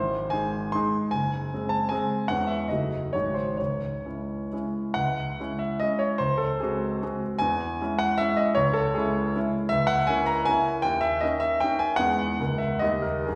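Romantic classical piano music in a triple-time dance style, this brief passage cut from a longer piece has a capricious, nostalgic mood, with dotted rhythms and a freely bending rubato pulse in 3/4. A solo grand piano carries everything, its tone clear and polished, with long sustain and audible action noise that lends an intimate, present quality. The phrase is stated and then begins again at 5.0 seconds, its minor-key harmony leaning on dominant-seventh and diminished colours that keep the dance restless and wistful. The piano sounds up front in its own tone yet is set within a wet recital hall reverb, heard from further back in the room, so its notes linger in a glowing halo of space. The excerpt closes at 13.4 seconds on unresolved harmony, as if caught mid-thought.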